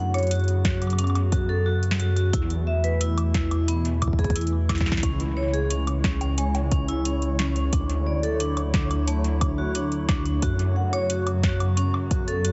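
Glitchy and intricate, this IDM excerpt at 89 BPM sets a warbling, nostalgic tape-like pad with chorus and reverb against ringing vibraphone arpeggios through a low-pass filter and tape echo, a dark, rumbling detuned saw bass up front, an analog drum machine of punchy snare, metallic hats and woodblock, a deep electronic kick entering at 0.6 seconds, and a grainy, flickering texture pumping faintly in the background from 5.8 seconds, all under a heavily compressed radio sound as the chords move from F#sus4 through Esus4, C#m and Dadd9.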